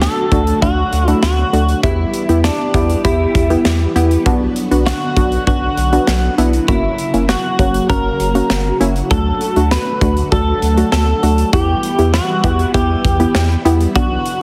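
Heavily compressed with a radio-style sheen and light reverb, this upbeat, wistful synth-pop excerpt sets a clean, direct-recorded electric guitar melody with analog chorus and tape echo over a warbling, dusty pluck, a swirling phased string machine holding sustained chords, a round analog bass, and a polished studio drum kit with a punchy kick and high-tuned snare.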